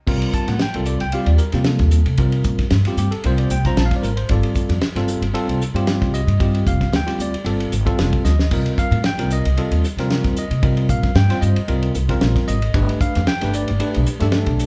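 Electric jazz fusion with a slick, funky mood at 114 BPM in C dorian, where a bright, bell-like tine electric piano comps through C7(omit3), G9sus4, Cm7 and G7 over a woody pizzicato upright bass and a damped 70s drum kit with a fat snare, tight kick and dark cymbals that drops in a fill at 8.3 seconds, all heard as a band playing live in one large studio room with moderate reverb, cut from a longer piece.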